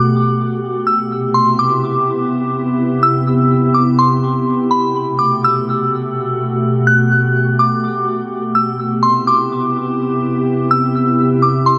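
A half-time hip hop feel carries this floating, dreamy fragment, where a crystalline, warbling FM synth bell with chorus, tremolo, low-pass filtering and dub echo sings a high melody over an ethereal, slow-attack FM pad that holds mellow Gmaj9 and Cmaj7 chords with ensemble chorus, both up front for the full 11.8 seconds in an echo-heavy mix steeped in chamber reverb and tuned to A4 = 444 Hz.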